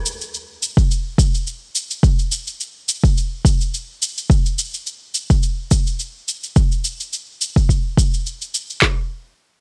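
A lightly swung 4/4 groove on an electronic afro-pop drum kit, with a deep kick, woody snare and handclaps entering at 0.8 seconds, rides over an up-front produced cabasa in this meditative, warm downtempo excerpt, its bright 1980s-style digital sound dry and close.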